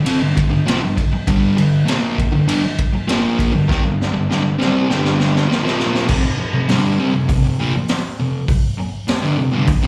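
A straight 4/4 pulse at 100 BPM drives this swaggering, menacing garage rock fragment, cut from a longer piece and heard as a live gig through a club PA with light reverb. The raw drum kit sits up front with a gritty, saturated acoustic sound, pairing a high-tuned snare and boomy kick with hi-hat, ride and crash cymbals, its top end rolled off in a small-room tone. A fuzz guitar carries the riff from F2 to C4, picked and double-tracked, its distorted, compressed sound pushed forward alongside the drums. The opening part rests on G minor, and a drum fill from 3.7 to 6.1 seconds leads into a new section built on an F5 chord. Both parts run nearly the full length, the guitar to 9.9 seconds and the drums to 9.8 seconds.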